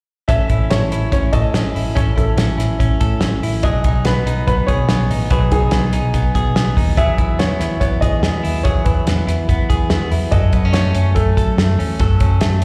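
A warm, woody upright piano carries the melody, slightly detuned with audible action noise and a slapback echo. It sits over a clean, compressed electric guitar playing picked arpeggios with the same echo, a dark, foam-muted picked bass and a cloth-damped drum kit with a fat snare and tight kick. This bright, youthful jangly indie pop excerpt moves at 144 BPM in 4/4 through A, B6, Eadd9 and F#m, and it sounds like a live gig heard through the venue's PA in a recital-hall reverb.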